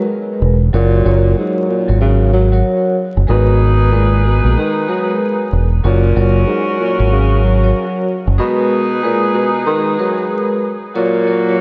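A breathy, whispered tenor saxophone melody and mellow, ringing soft-mallet vibraphone with a cassette-tape tint open this dark, reflective hip hop excerpt in G# minor at 94 BPM with a swung 16th feel, joined at 0.4 s by a round, up-front dub fingered electric bass that drops out at 8.4 s, while an edgy, punchy saxophone section adds tight stabs from 3.3 s over a G#madd9 to F# chord cycle, all set in a dreamy, reverb-soaked hall with vinyl crackle.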